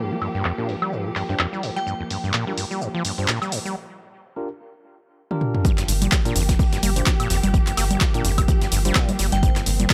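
Acid house at 127 BPM in G minor pentatonic, this gritty, raw cut from a longer piece rides a swung 16th-note groove over a single Gm7 chord, tuned slightly flat of standard pitch. A squelchy, resonant sawtooth acid bass with tube saturation and dub echo drives a riff from the first moment, under muted, veiled strings holding sustained chords that pump against the sidechain. A punchy, overdriven analog drum machine enters at 0.2 seconds with congas, cabasa, handclaps, woodblock, toms and hi-hat under a filter sweep, while clean tine electric piano stabs with subtle chorus and dub echo drift in. A crystalline FM synth bell sounds a brief G5 note with chorus and delay, then returns near the end. After a break and a short drum fill, the drop lands at 5.6 seconds with an up-front, dry, overdriven kick and a quiet, tape-warm sampler-style kit of snare and hi-hat. A round, deep analog bass on G1 that pumps with saturation joins at 5.9 seconds, all set in digital ambience.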